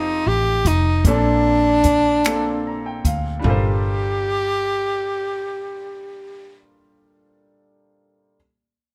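A breathy, subtone tenor saxophone sings a dark, whispered melody up front over a brilliant grand piano and a round, foam-muted electric bass in this sultry, late-night slow six-eight R&B excerpt in G minor at 50 BPM, set in a moderate live-room reverb, with a dry cocktail kit of finger snaps, hi-hat, punchy kick and toms entering at 0.7 s, a piano fill arriving at 2.2 s, chords moving from F9 and Bbmaj9 to Gm11, and the piano carrying on alone until 8.4 s.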